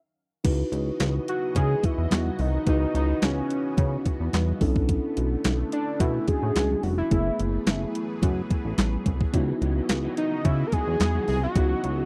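After a brief silence, an early-eighties boogie funk groove starts at 0.4 seconds with a crisp, thumpy, overdriven 8-bit drum machine (kick, snare, hi-hat, handclaps and crash) set up front beside a glossy, chorused synth bass that plucks and sustains, also up front. A mellow tine electric piano plays accompaniment, joined by a lush, detuned unison pad that holds sustained chords through chorus and phaser, while very quiet, bright congas with a thin skin add soft-handed percussion. At 1.3 seconds a fat analog lead carries the melody up front, its evolving sawtooth tone shaped by a filter sweep, vibrato, chorus and a slapback echo. Moving at 108 BPM in a straight 4/4, the funky, late-night passage cycles through Dbm11, Bm11 and Gbm11 before returning to Dbm11, where a dark, slightly broken-up electric guitar riff slips in softly in the background at 9.3 seconds. The sound is dry and close, like a 1970s studio recording, in this brief cut from a longer piece.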